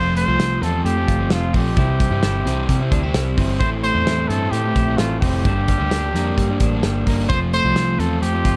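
Played straight in 4/4 at 130 BPM, this breezy, bright jangly indie pop cut in F major moves through F, C, Am and Gm as a clear, up-front trumpet carries the melody with scooped notes over a crunchy overdriven guitar, a twangy, compressed twelve-string electric guitar picking arpeggios in the background and a dark, round, foam-muted picked bass, while a loose acoustic drum kit with a punchy kick joins at 0.2 s, the whole mix sitting in light reverb and small-room ambience.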